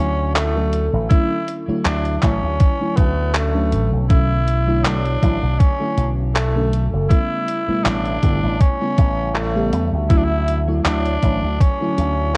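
A growling, raspy tenor saxophone carries the melody through this dreamy, faded vaporwave excerpt at 80 BPM in D major, its edgy tone roughened by vintage 12-bit sampler grit and tape echo. Beneath it, a lush FM electric piano with a soft pad layer shimmers with tremolo and analog chorus over Dmaj9, Bm11 and A9 chords, while a punchy slap bass with an envelope filter and tube saturation sits up front. The detuned 8-bit drum machine's handclaps and hi-hat come in at 0.4 seconds, followed by a thumpy electronic kick drum at 1.1 seconds, all worn by warbling cassette tape pitch drift.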